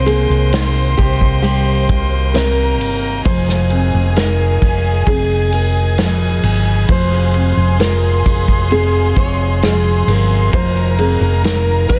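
A straight 4/4 pulse at 66 BPM carries this melancholic, emotional pop ballad in F minor, tuned to A4 = 444 Hz, with an acoustic drum kit played with bundle sticks on punchy kick, medium-tuned snare and ride cymbal entering at 0.1 s beneath a round, dark, up-front hollow-body fingered electric bass. A fingerpicked nylon-string guitar carries the melody with delay, joined by a lush, bowed violin section with vibrato and its own delay playing a second line. A boxy, thick-felt upright piano gives mellow accompaniment, and a shouting tonewheel organ with light overdrive and a stopped rotary speaker holds chords moving from Cm7 to Fm7 and Fmadd11, all in a small, lightly reverberant room with a dense, heavily limited modern master, cut from a longer piece.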